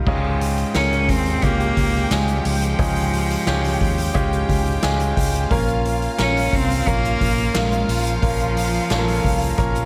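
A small-room ambience with light reverb frames this short cut from a longer piano-driven pop piece, moving at 88 BPM in a straight 4/4 with a warm, hopeful mood. A brilliant concert grand sits up front carrying the accompaniment, its action noise audible and its deep bass ringing with long sustain, while a round, punchy, foam-muted electric bass with a dark amped tone holds the low end. The drum kit is played with soft mallets, giving a boomy kick, a medium-tuned snare, dark cymbals including crash and hi-hat, and a natural hall character. From 0.8 seconds a single bowed cello takes the melody with a biting, intense tone, light vibrato and a touch of delay, and crisp, very quiet group handclaps join at the same moment before dropping out at 9.1 seconds. Behind it all, a lush, smooth violin section plays a second line in the background, and the harmony moves from Db to Bbm at 5.5 seconds.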